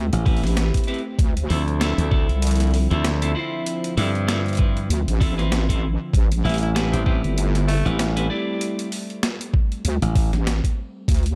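Gritty and swaggering, this glitch hop excerpt at 97 BPM in A minor rides a swung 16th feel over Am7 and Dm9 chords, with an overdriven, thumpy electronic kick and a saturated square-wave wobble bass up front beside a bright, punchy slap bass, a boom bap sampler-style kit with a high-tuned snare and hi-hat, dark clean electric guitar stabs carrying 12-bit grit and tape echo, a smooth detuned sawtooth pad pumping in the background, and a breathy, raspy tenor saxophone melody with vibrato appearing briefly at 6.4 seconds.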